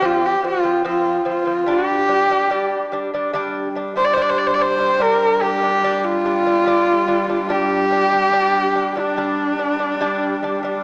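A clear, focused horsehead fiddle carries the melody up front in this windswept, vast piece of Mongolian folk music at 72 BPM, its husky bowed tone colored by vibrato and portamento. A delicate, fingerpicked lute with double gut strings plays arpeggios beneath it over F5 and G5 harmony, and at 3.3 s a dark, nasal second horsehead fiddle enters with a soft-attacked, airy drone on G3. A concert hall reverb lends a sense of space, though the overall sound is small, as if heard through a modest speaker, in this excerpt cut from a longer piece.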